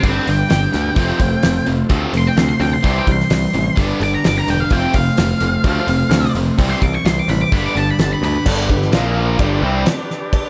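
A straight, driving 4/4 classic rock groove rides on a cloth-damped, thuddy drum kit with a fat snare and a punchy picked bass, while two bright distorted guitars play riffs alongside a very quiet, slow-rotary tonewheel organ and a dark octave-fuzz lead guitar solos with wah and slapback echo until 8.5 s, just after a faint, double-tracked fuzz guitar enters at 8.4 s and a saturated, metallic cowbell joins for a sunny final stretch.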